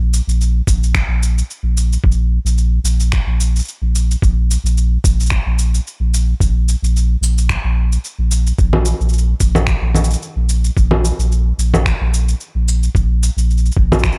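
A deep, round sine sub bass opens this intimate, autumnal folktronica excerpt, sitting up front with a fast attack and sustained notes, its mellow tone given a touch of tube saturation. Almost at once an electronic shaker, finger snaps and congas join in, their produced sound placed further back and carrying the air of a large room. At 0.7 seconds a muffled, thumpy electronic kick drum arrives, compressed and sampler-style with a tape-warm character and the close feel of a small room. The groove sits in 4/4 with a light swing on the sixteenths, giving the sparse arrangement a relaxed sway. The mix stays dry and close, and the bass and percussion carry on together to the end of the excerpt.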